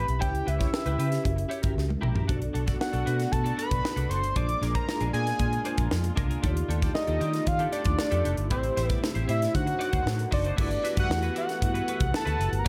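A fat analog lead synth carries the melody up front, its sawtooth and square-wave tone thickened by a sub octave, with a filter sweep, fast attack and vibrato on sustained notes. This is polished 1980s jazz-funk pop at 116 BPM in a straight 4/4, urban and breezy in mood, cut from a longer piece. A dark, round, foam-muted electric bass sits up front beside a crisp fusion drum kit with a punchy kick and high-tuned snare, and the drums slip in a fill from 1.8 to 2.3 seconds. A mellow tine electric piano and a bright, twangy twelve-string electric guitar riff both carry ensemble chorus, while a studio string section with a reedy, gut-string tone and light vibrato enters in the background at 2.3 seconds. Rich jazz harmony moves through chords such as Bm7, Ebmaj9#11 and D7b9 before settling on Gmaj13 as a new section begins at 10.6 seconds, all framed by light studio reverb.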